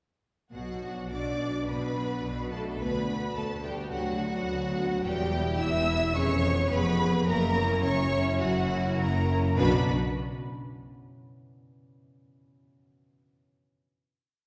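A high, clear violin section carries the melody in this stormy, restless romantic orchestral piece, its bowed line intense and lush with vibrato yet set somewhat distant in the hall. A second violin section, fuller and more focused, doubles the tune an octave below, while a dark, roomy French horn section, touched with light vibrato, sustains chords and also doubles the tune at the octave from further back. A concert harp rings out broad broken chords in the background, and the viola section joins at 0.8 seconds with smooth, even syncopated and sustained chords. Cellos mark the bass on the beats with sustained notes, and a double bass section, smooth and distant, doubles that bass line far below. The short, dramatic piece moves through a minor-key progression to a final chord at 9.6 seconds, all bathed in the wet reverb of a church or concert hall.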